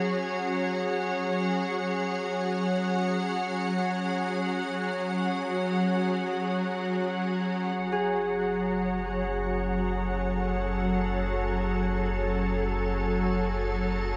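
Ambient, spacious and melancholic, this excerpt sets an up-front, organ-like pad of pure, chorused sustained chords over a nasal, string-like bowed drone in the background, with a round sub bass entering at 7.8 seconds, a ringing, fingerpicked concert harp adding tape-echoed arpeggios from 7.9 to 10.2 seconds, a synth drone fading in through the second half, and a cathedral reverb bathing the whole in a long, wet tail.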